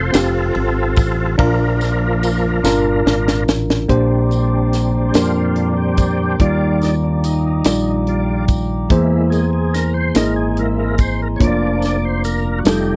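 Slow gospel in 6/8 at 48 BPM in Bb major, jubilant and uplifting, cut from a longer piece and captured as a dry, close 1970s-style studio recording. A full, lightly overdriven tonewheel organ with slow rotary speaker and chorus vibrato takes the lead throughout over a worn, slightly out-of-tune tine electric piano, a round fingered electric bass, a jingly tambourine and a tight funk drum kit with a high-tuned snare, which plays a fill from 2.6 to 3.9 seconds. At 3.9 seconds a glassy, ethereal glass harmonica enters with slow-attack sustained chords as the harmony moves through Bb69, Ebmaj9 and C7alt/E before settling on Bb/F.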